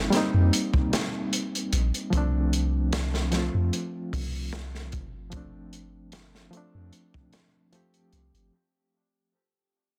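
A soft, round 808-style bass sits deep and up front in this short, melancholic trip hop cut from a longer piece, moving at 75 BPM in a straight 4/4 as the chords shift from Cm7 to Dm7 at 2.1 seconds. A reedy electric piano carries the accompaniment with tremolo and tape echo, while a gritty, saturated breakbeat kit with a tight kick and rolled-off top enters at 0.1 seconds. The whole dark passage fades out over its 8.5 seconds, heard in a studio room with a dense, heavily limited modern master.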